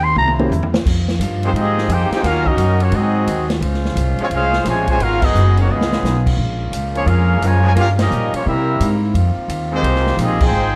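A brassy, sultry big band swing cut in F minor opens at 174 BPM with bright trombone chords and a woody, growly upright bass plucked up front. A drum fill kicks off the swinging kit at 0.2 seconds, and a dark grand piano touches in for a moment. A brilliant, vibrato-laden second trombone line enters in the background at 1.4 seconds, and from 1.5 seconds a clear, smooth-topped trumpet section carries the melody, with band accents punctuating a chord progression running from C7b9 through Gbmaj9 back to Fm11, all under light reverb and a warm, dark production.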